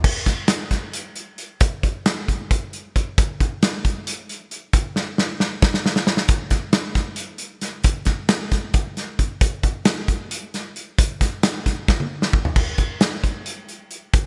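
A loose indie drum kit carries this short rock excerpt on its own, an acoustic set heard in a small, pumping room with a medium-tuned snare, a tight kick and the whole kit placed up front. Crash cymbal, hi-hat, kick, snare and toms all feature across its 14.2 seconds. The pulse runs at 268 BPM counted in eighths, in a straight 7/8 metre that gives the playing an intricate, slightly wistful character. Drum fills arrive at 5.0 and again at 11.9 seconds, the second one leading into a brief new section at 12.6 seconds. Light reverb and a bright production with a 1980s digital sheen frame the kit.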